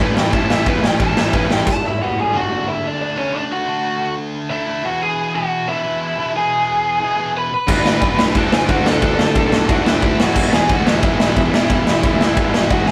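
A rough rehearsal-room recording with light reverb catches a rebellious, energetic punk rock excerpt, with a biting, overdriven lead guitar up front playing the melody throughout and a very quiet, bright distorted electric guitar churning a low riff beneath it. A saturated, gritty garage drum kit with punchy kick, snare, crash and ride, a growly fuzz bass and a tight distorted guitar riff in the background open the piece before breaking off around 1.6 to 1.7 seconds, leaving the lead's solo line exposed over the other guitar. They return together at 7.7 seconds as the chords move between D and E.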